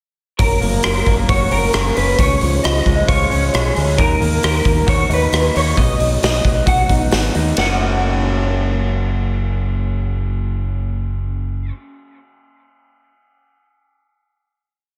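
A big arena sound with lush hall reverb frames this short, bittersweet and anthemic alternative rock piece in F# major at 134 BPM, moving through F#, C#, D#m and B before settling on a final F# chord at 7.6 seconds. A dark, slightly broken-up lead guitar through a small old amp carries a motif-based melody with ensemble chorus and slapback echo, while a second lo-fi guitar plays picked arpeggios treated with subtle chorus and analog delay. An overdriven, growling fingered bass drives eighth notes up front, and a raw, gritty garage drum kit with a punchy kick and a bright stone-room sound pumps out a big rock groove until it stops at 7.7 seconds.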